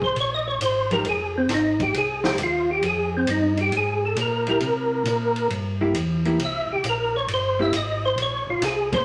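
Soul jazz organ trio with a late-night, smoky swing, where an up-front percussive tonewheel organ solos with a round, slow-rotary chorus-vibrato melody over a mellow tonewheel organ bass with key click, a compact cocktail drum kit with a high-tuned snare and punchy kick, and a dark, compressed hollow-body electric guitar comping from 0.9 seconds, all set in a lush large-studio reverb as Bbm9, Fm9 and C7 chords pass.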